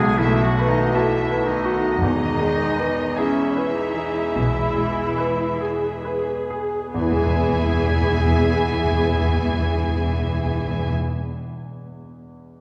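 A passionate, lyrical romantic passage for piano and orchestra opens on a dominant chord, with the clear, up-front concert grand carrying the melody over a muted, veiled string bed of con sordino violins and cellos, a mellow French horn section holding sustained chords, a clear clarinet line and a lush, very quiet double bass section. Muted violas and a distant second violin melody join at 0.9 and 1.0 seconds, and timpani struck with hard mallets enters at 2.0 seconds as the harmony settles onto the home chord. The rubato phrase slows through its first 7 seconds before shifting into a new section, with the piano ringing on in a spacious church reverb after the strings, winds and horns drop out at 10.9 seconds and the timpani at 11.0 seconds.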